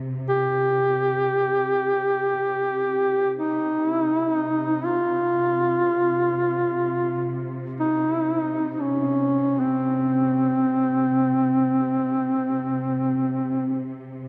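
Drenched in a wet cathedral reverb, this fragment of a Caucasian folk lament sets a mellow, punchy solo duduk up front, its scooped notes and vibrato shaping a longing, mournful melody from 0.3 seconds, above a lush, bowed symphonic cello section holding a focused drone throughout.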